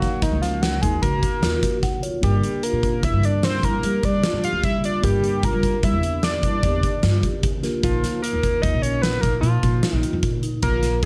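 A fat, warbling analog lead with chorus carries the melody up front in this brooding, driving progressive instrumental fragment in 7/4, backed by a punchy, big-room arena drum kit, a woody pizzicato upright bass, airy ringing vibraphone arpeggios and a mellow tine electric piano in the background that adds a brief fill at 1.6 seconds, all in a light small-room reverb.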